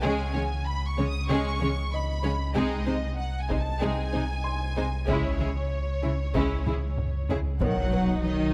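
Brooding and vast, this short cut from a longer hybrid orchestral and electronic film score moves at 95 BPM in a straight 4/4 in C# minor, its harmony passing from C#m through G#/B# and back before landing on B. Lush symphonic violins carry a vibrato-rich, smooth melody up high, while a close, intimate studio violin section sings a soft-attacked second line beneath, and focused violas and background cellos fill in bowed accompaniment and bass. A deep, full sine sub bass sits up front, joined by a very quiet, juicy resonant pluck tracing phaser-tinged arpeggios and a felt-muted upright piano adding delayed, mellow texture in the background. Hard-stick taiko drums enter at 2.6 seconds from the background, playing a fill from 6.7 seconds that leads into a huge, bright but very quiet impact at 7.6 seconds. At that moment a classical-style French horn section brings in sustained chords and a very quiet studio double bass section slides in with portamento, all set within a moderate concert hall reverb.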